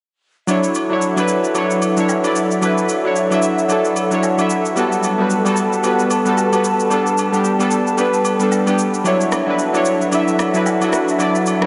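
Amapiano with a warm, relaxed swing, this short cut from a longer piece sets round, warbling analog keys up front, their detuned, vintage tone thickened by chorus, over sustained chords from a mellow, hollow flute section with pure, vibrato-touched notes. Electronic shaker and rim click drive the groove, while agogo bells and woodblock sit in the background with an acoustic, live-room feel. Everything floats in a dreamy, cathedral-sized reverb as the harmony moves from Dmaj9 through Gmaj9 and A9sus4 before returning to Dmaj9 at 9.1 seconds.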